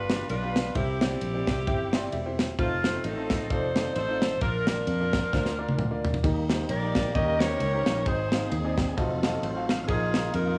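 Swung eighths in 4/4 drive this hopeful, reverent uptempo gospel clip, where an edgy, up-front saxophone section carries the melody with pop-style vibrato over a clear baby grand piano with audible action noise and brief fills, a punchy, foam-muted fingered electric bass, and a tight, dry funk drum kit with a fill at 5.3 seconds, before a full tonewheel organ with slow rotary speaker and chorus vibrato joins at 6.2 seconds with sustained chords in the background, the horns, piano and organ colored by cassette tape and plate reverb in a modest home-studio room.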